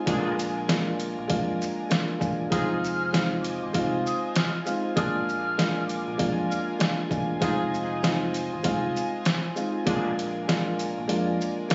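Reflective and dark, this boom-bap hip-hop excerpt moves at 98 BPM with a swung sixteenth feel in F dorian, alternating between Bb7 and Fm7. A compressed, pitched-down trip hop drum kit sits up front with a thumpy kick, medium-tuned snare, hi-hat and shaker, its muffled sampler character setting the tone, and the kick drops out at 11.1 seconds. Beneath it, a round, punchy fingered electric bass supplies a deep dub low end, while a woody, slightly detuned upright piano plays intimate accompaniment with audible action noise. A rich string section holds soft-attack sustained chords that seem to float above, and a distant horn section adds clear, roomy stabs with delay. From 2.5 to 6.7 seconds an airy concert flute carries an expressive, tongued melody with vibrato, set back in the mix and trailed by delay, all captured as if on a phone in the room, with light reverb and a muffled top end.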